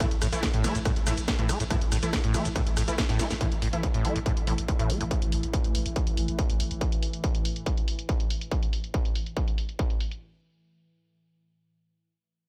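Driving peak-time techno with a hypnotic pull, this cut from a longer track opens straight into a drop in a straight four-four pulse. A distorted, up-front electronic kick anchors the groove, while a layered techno kit adds a cracking snare, softened hats, ride cymbal, rim click and shaker, all filtered and re-recorded in a large room. A squelchy, gritty sawtooth acid bass carries the riff with resonant, saturated filter plucks through ensemble chorus and tape echo. Aggressive, detuned rave stabs sit above it with chorus, reverb and echo, and a growling, buzzy 808-style bass hums very quietly underneath. After a drum fill at 3.1 seconds, a filter sweep moves across the acid bass, and at 4.6 seconds a deep, moody ambient pad fades in slowly as a dark sustained drone, pumping with the kick inside a digital ambience.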